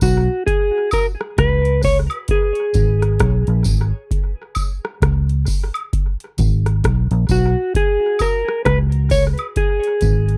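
This roots reggae piece moves at a slow 66 BPM in 4/4 with a 60% swing on the sixteenths, and its mood is hypnotic and serious. A vintage muted fingered electric bass sits up front with a dark, round, foam-muted tone, holding the low end between G#1 and C#2. A booming analog drum machine plays hi-hat, deep kick and rim click, with metallic hats and a sound re-recorded in a large room. A mellow electric guitar, clean and fingered, carries the melody between F#4 and C#5 through a tape echo. Tambourine and woodblock add a softer acoustic layer captured in a live room. The close, dry 1970s-style studio sound frames a cut from a longer piece that moves through A#m7, G#m and chordless stretches, with chords changing at about 0.5, 2.3 and 4.1 seconds.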